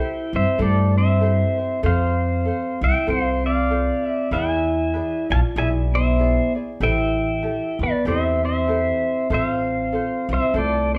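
The band plays live in one large studio, and a moderate reverb with a 1.2-second tail gives the room an unhurried glow. This relaxed, languid Hawaiian piece, cut from a longer performance, moves at 96 BPM in 4/4 with a gentle swing on the eighth notes, tuned slightly low to A4 = 436 Hz. Up front, a clean, compressed electric pedal steel guitar carries the melody, played with fingerpicks, slide and volume swells. A mellow vibraphone with soft mallets and its motor off rings out a metallic second line beneath it, while a light, fingerpicked acoustic ukulele sits in the background. From 0.3 seconds a woody, growly pizzicato upright bass with steel strings adds a thumpy, warm foundation up front. The harmony drifts from C6 through F and E7 to Am7, settling on Fmaj7/A.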